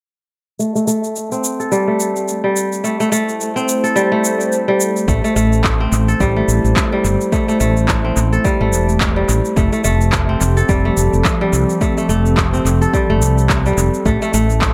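A swung sixteenth-note groove in 4/4 carries this meditative, mystical organic downtempo excerpt, opening at 0.6 seconds with crisp, ringing fingerpicked kora arpeggios under a filter sweep and analog delay, alongside overdriven electronic shaker and handclaps trailing dub echo. At 3.3 seconds a warbly, nostalgic, lo-fi tape-like pad of detuned, ring-modulated chords settles in the background with chorus and sidechain pumping. At 5.1 seconds a round, dark fretless electric bass, also pumping, and a deep, overdriven electronic kick drum join, all within an echo-heavy mix bathed in spring reverb.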